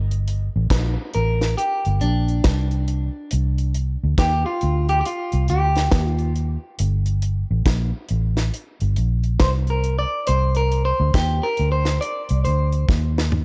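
A dark, round, foam-muted bass opens this serious, laid-back roots reggae excerpt in G minor at 69 BPM with a swung sixteenth feel, joined at once by a dry, deep drum kit with a high-tuned snare and tight kick, while from 1.1 s a clean, picked electric guitar with tape echo takes the lead over a slow Gm to Cm sway in light studio reverb, until a drum fill closes the passage at 12.9 s.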